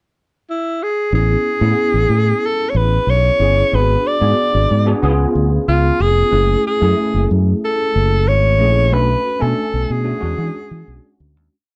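Glossy and urban, this polished 1980s jazz-funk pop piece in A major moves at 92 BPM in a straight 4/4: a breathy alto saxophone with slapback echo enters at 0.5 seconds, singing a smooth-topped jazz melody of motif-based sentence phrases with vibrato, subtone and scooped notes. At 1.1 seconds a worn, slightly out-of-tune tine electric piano joins, lightly overdriven and chorused, with syncopated rootless chords and grace notes, alongside a round, up-front fingered electric bass that weaves an agile syncopated line with slides and chromatic approach notes. The close, dry studio recording fades out from 8.9 seconds.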